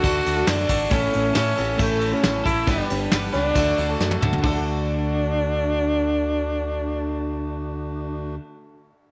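A light studio reverb gives this short clip of folk rock and heartland rock an open-road, jangly feel, with a breathy tenor saxophone up front carrying the melody in a whispered, intimate pop style, its soft attack, scooped notes and vibrato sitting close to the ear. Beneath it, a deep dub picked electric bass lays down a dark, round and punchy low end, while a bright, clean twelve-string electric guitar plays a compressed riff in the background. A soft brush drum kit sits up front with dark cymbals, a medium-tuned snare and a punchy kick, playing a fill from 4.0 seconds before dropping out at 4.5 seconds. Very quiet in the mix, a full-bodied picked steel-string acoustic guitar and a woody upright piano with short sustain add accompaniment, and a reedy, airy hand-pumped harmonium breathes sustained chords underneath. The harmony moves through D, A and G before returning to D, and the second section carries on from 4.4 seconds until 8.0 seconds.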